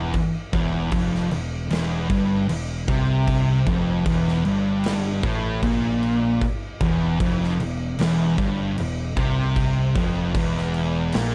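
A thick, fuzz-drenched guitar sits up front grinding out a low riff, joined by a second fuzz guitar set further back in the mix, in this ominous, sludgy stoner and doom metal fragment cut from a longer piece. Beneath them, an overdriven picked electric bass adds a round, punchy, dark low end, while a big acoustic rock drum kit enters at 0.1 s with a punchy kick, medium-tuned snare and bright crash cymbals ringing in a big room. The whole passage holds on one E minor chord at a slow, straight pulse, with light reverb and a dark, warm production.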